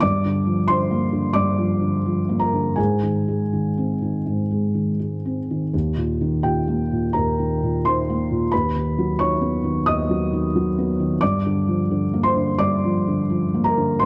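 A loose, rubato pulse in 4/4 carries this tender, peaceful neoclassical minimalist excerpt, where a solo felt-muted upright piano, soft and intimate with thick felt and audible action noise, sits up front in a dark production with light reverb, moving through Gm7, Ab, Eb and Badd9/D# before returning to Gm7 at 11.2 seconds, with a slightly low tuning of A4 = 439 Hz.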